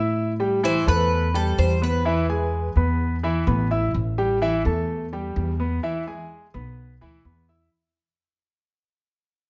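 Cuban son and guajira in a sultry, danceable mood, this short fragment of a longer piece moves in a straight four. A concert grand piano plays arpeggios from start to finish, its intimate, polished tone carrying deep bass and audible action noise. Beneath it, a pizzicato upright bass with gut strings gives a woody, thumpy, dark foundation, sitting up front in the mix. A picked Cuban tres adds a brief melody from 0.6 to 3.4 seconds, bright and metallic from its double strings, some of them octave-doubled. The harmony moves between A5 and E in a large studio with moderate reverb, and the music fades out over its second half, starting at 3.9 seconds.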